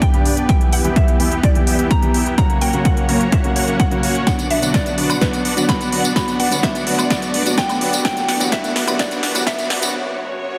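Festival progressive house in a euphoric, powerful build-up: a huge, thick, detuned supersaw riff under a sweeping filter drives over sidechain-pumped warm grand piano accompaniment, while a woody, mellow FM pluck carries the melody through lush chorus and delay and distant symphonic strings sit very quietly beneath; a punchy, overdriven kick sits up front beside crisp hats, snare, tambourine and woodblock from the big-room kit, a drum fill starts at 4.3 seconds and a faint electronic riser at 4.4 seconds, and a brief break arrives at 9.9 seconds in this moderate hall reverb, cut from a longer piece.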